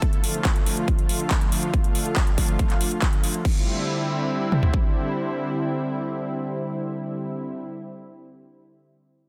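Uplifting trance at 140 BPM in 4/4, this short, euphoric fragment sits in C major and is cut from a longer piece. A lush, thick unison pad built from detuned sawtooth voices holds sustained chords from D3 to F4 throughout its 7.6 seconds, its slow attack and long release giving a warbling, vintage shimmer brightened by chorus and rhythmically pumped by sidechain. Alongside it, a big-room electronic drum kit drives a punchy, up-front kick with toms until 4.8 seconds, while a quieter layer of crash cymbal, handclaps and metallic hi-hats drops out at 3.5 seconds. The harmony moves from Dm to Cadd9 at that same point, marking the shift into the second section. Light reverb surrounds a dense, heavily limited modern master.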